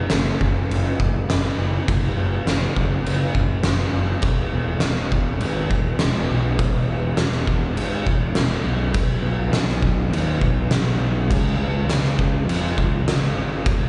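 A fuzz-drenched picked electric bass and an oversized, low-tuned drum kit kick off together in this rowdy, swaggering garage rock excerpt, striding along at 102 BPM in a straight 4/4 and tuned slightly below standard pitch. The bass sits up front, overdriven and tube-saturated, while the gritty kit pairs a punchy kick and fat snare with dark crash cymbals in a bright stone room that pumps. Heard as a live gig through the venue's PA with recital-hall reverb and a dull top end, the piece shifts into a new section at 4.2 seconds before being cut off near 13.9 seconds.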